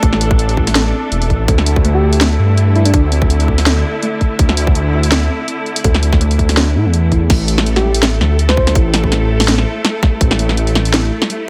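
A half-time drum and bass groove with a light swing rides on a tight electronic kick and an up-front kit with a cracking snare, hi-hat and crash, under a deep, rumbling detuned saw bass that anchors this dark, spacious excerpt. Distant, lush symphonic strings hold sustained chords with sidechain pumping, while a woody, hollow kalimba plays delayed arpeggios and a pulsing gated texture with chorus hovers in the background until 7.3 seconds. A round, keys-like FM lead with chorus and dub echo surfaces briefly at 1.9 and 7.8 seconds, all set in a light reverb.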